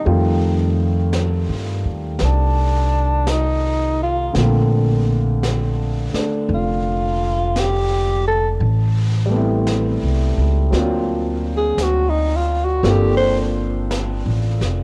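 Swung eighths at a slow 56 BPM in 4/4 carry this intimate, melancholic jazz ballad, where a breathy, growling tenor saxophone with vibrato and scooped notes sings the melody up front until 13.4 seconds over a long-sustaining grand piano, a woody pizzicato upright bass and brushed drums with a high-tuned snare, the saxophone, piano and drums tinted by cassette tape in a lightly reverberant home recording that moves through F9, Bbmaj9, Am9, D7alt and Gm11.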